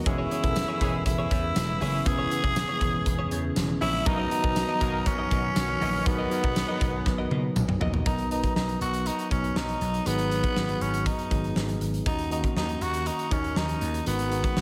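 Glossy and nostalgic, this excerpt from a longer 1980s-style pop piece moves at 120 BPM in a straight 4/4 in B major, opening on an E6 chord before settling into Bmaj7 and later moving through B, G#m7 and D#m7. A raspy, gritty tenor saxophone sits up front with the melody, its vibrato and edgy tone carried on tape echo and slapback echo, while a punchy, growly vintage slap bass and a big rock drum kit with a fat snare and punchy kick drive the groove throughout. A tine electric piano plays accompaniment with a warm, clean tone and slapback echo, joined for the first 8 seconds by a shimmering, mellow chorused pulse-width pad and a bright, twangy clean electric guitar riff tucked in the background. A tight, clear horn section adds very quiet stabs with octave doubling, and a jingly tambourine shakes softly until just before the second section, as a drum fill at 7.1 seconds leads into that section at 8.1 seconds. 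Moderate scoring stage reverb and studio ambience give the whole mix a big arena sound.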